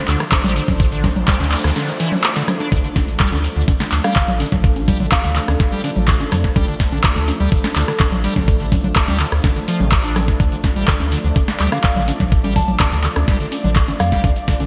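An acid house excerpt at 125 BPM opening on a D minor chord, playful and raw, built on a thumpy, tape-warm electronic kick and a booming analog drum machine with crisp snare, metallic hats, handclaps, congas, rim click and shaker under gated reverb, while a deep sine sub bass pumps with the sidechain, a squelchy, resonant square-wave acid riff sits in the background with chorus and delay, a thick detuned sawtooth pad holds lush sustained chords, a background noise sweep passes from 1.1 to 2.7 seconds, and a soft, pure FM bell melody with phaser appears at 4.0 and 11.7 seconds, all in a bright 1980s-style digital production with light reverb.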